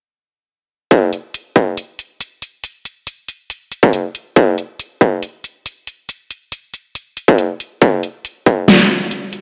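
Meditative and heavy, this deep dubstep excerpt in half-time pairs an up-front dubstep drum kit, with a huge snare and metallic hats, against a distorted, layered electronic kick drum shaped by a high-pass filter, both set in a moderate echo-chamber reverb from 0.9 seconds, the kick stopping at 8.6 seconds and the kit at 9.4 seconds.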